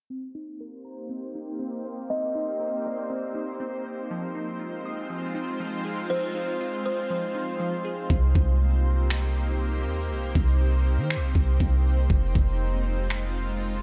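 Melancholic and ethereal, this atmospheric cloud-rap excerpt sits at 120 BPM in a half-time feel in C minor, opening with a glassy, crystalline wavetable pluck spinning arpeggios through a filter sweep and digital delay until 8.1 seconds, soon joined by a shimmering, granular ambient pad holding sustained chords under chorus, built-in reverb and sidechain pumping, and a buzzing, woody kalimba that carries a short melody from 2.1 seconds. At 8.1 seconds a deep, round 808-style bass and a smooth R&B drum kit of finger snaps and a knocking kick arrive up front, the hi-hats muted, as the harmony moves between Cm7 and Fm7 in a light reverb.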